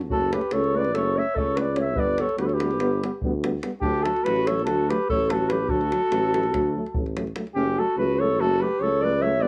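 A mellow, distant tuba and a tight davul open this exuberant, wild excerpt of Balkan brass band folk, racing at 290 BPM in eighths through a straight 9/8 over F#m, G and D chords in a roomy space. A vibrato-laden flugelhorn carries the melody up front, while a dark clarinet plays a second line and two smooth-topped euphoniums, one with vibrato and one with light vibrato, accompany softly in the background, these three parts coloured by cassette tape. The davul drops out at 7.5 seconds, leaving the brass and clarinet to close the passage.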